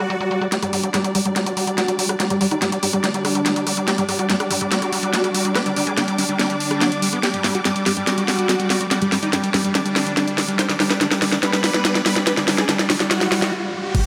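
Hypnotic and psychedelic, this psychedelic trance passage at 143 BPM in 4/4 is cut from a longer piece and given over to a build-up. A huge, detuned supersaw carries the melody between G3 and C5, pumped by sidechain and coloured with phaser, tape echo and a low-pass filter sweep, while a squelchy, distorted acid bass riff between F#3 and B3 pumps beneath it under its own filter sweep. An overdriven electronic kit sits up front with a cracking snare, bright hats, rim clicks and crash, playing a drum fill through most of the passage with its hats, snare and cymbals filtered. Behind them a dark, distant chamber string section adds a bowed, vibrato-laden texture from G3 up to D6 until 13.5 seconds, and a very quiet riser, swell and impact enters at 9.9 seconds. After a swell and a brief stop at 13.5 seconds, a knocking, overdriven kick lands at 13.9 seconds, all set in a lush hall reverb.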